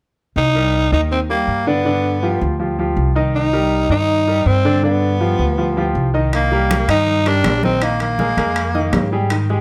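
A raspy, growling tenor saxophone takes the solo melody at 0.4 seconds over a woody, pizzicato upright bass and a polished concert grand piano. This is fiery, driving salsa in C minor at 161 BPM in a straight 4/4, cut from a longer piece. The saxophone sits up front with vibrato and a smooth top to its gritty tone, and the dark, steel-strung bass is also forward in the mix. The piano's accompaniment has a deep low end and short sustain, moving over a Cm7 and G7 vamp that later shifts toward Bb7sus4. At 6.3 seconds, damped, thin-skinned congas enter in the background alongside ringing metal-shell timbales for the closing stretch. A light reverb gives the parts a modest sense of space.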